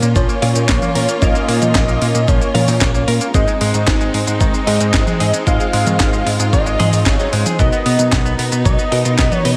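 A straight 4/4 groove drives this nostalgic, danceable italo disco excerpt, with a gritty, thumpy, compressed kick arriving at 0.2 s beneath a tape-warm drum machine of cabasa, handclaps, hi-hat, toms and a medium-tuned snare captured in a small room. A fat, detuned bass blending sawtooth and square waves sits prominently in the mix, its filter sweep and moving notch giving it constant motion. Two twangy, bright, direct-recorded clean guitars sit in the background, one picking delayed arpeggios and the other playing stabs treated with ensemble chorus and delay, while a lush bowed string section holds focused, vibrato-rich sustained chords through Bbm, Ab and Bmaj7. From 0.2 s, a bold unison lead carries the melody, a mellow sawtooth-and-triangle voice with a sub octave, vibrato and a diffuse ambient delay. A moderate plate reverb soaks the whole mix in a dreamy haze.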